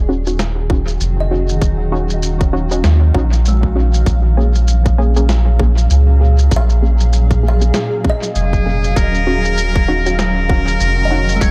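A cloudy, evolving granular pad and a deep, round sub bass open this meditative ambient dub excerpt in Eb minor at 98 BPM, joined at once by muted, detuned sawtooth chord stabs carrying chorus, dub echo and a filter sweep that runs until 9.0 seconds. A tight, overdriven electronic kick sits up front beside a muffled, tape-toned shaker and snare with dub echo, while a woody kalimba traces airy arpeggios in the background over a swung groove moving from Ebm7 to Bbm7. At 8.4 seconds a brilliant, buzzy trumpet with a metal mute enters as a distant, roomy solo melody with light vibrato and dub echo.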